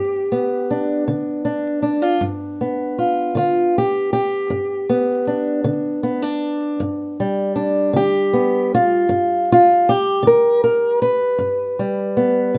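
Rolling in 12/8 at 52 beats per minute, counted in dotted quarters with a straight feel, this acoustic country blues fragment moves at an unhurried, laid-back pace that still carries a rollicking lilt. A single fingerpicked old ladder-braced acoustic guitar plays solo for the whole 12.6 seconds, spanning G2 to B4 and sitting up front in the sound. Its old strings give a woody, boxy tone. The harmony rests on G7 in G mixolydian, with the tuning set slightly high at A4 = 441 Hz. Light reverb and a dark, warm production wrapped in vinyl crackle lend the clip, cut from a longer piece, a worn, homespun character.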